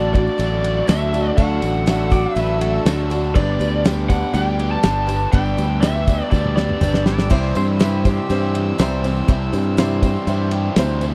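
Nostalgic and open-road, this folk rock and heartland rock excerpt at 121 BPM moves over D, G and C, with a dark, lo-fi overdriven lead guitar carrying the melody until 7.0 seconds above a woody, boxy picked archtop, a double-tracked crunchy riff guitar, a round, up-front fingered bass, dry 70s drums with a fat snare and tight kick that play a fill at 6.3 seconds, a jingly background tambourine, reedy bowed chamber strings with light vibrato, and a twangy pedal steel whose short volume-swelled slide lines appear first at 2.1 seconds, all in a close, dry 1970s-style studio sound.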